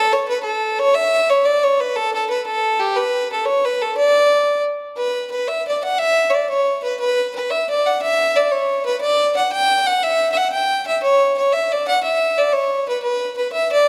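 Bright and cheerful, this Celtic folk fragment in a straight 6/8 features a single bowed fiddle playing solo and up front, its clear, earthy tone carrying light vibrato and a touch of tape echo, moving into a new section at 5.0 s within a moderate recital-hall reverb and a dark, warm production.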